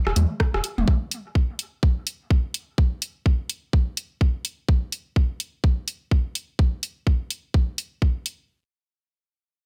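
Dry and close, this short cut from a longer minimal techno track sits at 126 BPM in 4/4 with a 16th-note swing, tuned slightly below standard pitch, and its mood is clinical and hypnotic. A round, deep analog bass with a nasal, filter-plucked tone and fast attack sounds only briefly at the start, from 0.1 to 0.8 seconds, spanning E1 to E2 with sidechain pumping. Alongside it, a minimal click kit of overdriven rim clicks and toms, re-recorded in a small room and trailed by dub echo, flickers in and is gone by 0.9 seconds. A garage drum kit of tape-warm hi-hats and rim clicks carries the groove from 0.2 seconds nearly to the end. An up-front, tight electronic kick, layered and the loudest element, anchors the pulse from 0.4 to 8.1 seconds.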